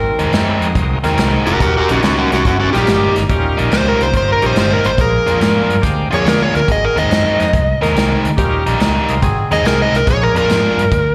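Heard through a venue's PA in a reverberant recital hall, this swaggering, soulful electric blues shuffle in Eb mixolydian rolls along at 142 BPM, with an up-front overdriven slide guitar taking the solo melody from 1.5 seconds over a biting, picked overdriven guitar riff, round and punchy fingered bass, a natural country drum kit with punchy kick and medium-tuned snare, smooth, tight saxophone section stabs, and a bright, shouting tonewheel organ in the background with key click, light overdrive and slow rotary speaker, while the slide, riff guitar, horns and organ all carry slapback echo.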